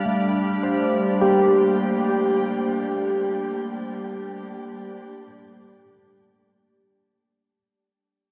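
A barky, lightly overdriven tine electric piano and a calm, organ-like drone begin together in this reflective, serene ambient excerpt in free time, tuned to A4 = 438 Hz. The electric piano plays arpeggios over a Gm7 chord through a combo amp with phaser and delay, while the drone holds detuned sine tones in unison with a slow attack, ensemble chorus and its own built-in reverb. Both parts sit up front in a wet shimmer reverb with a 6.2-second tail, and a fade-out runs from 1.4 to 7.6 seconds, with the drone's long release lasting until 7.7 seconds.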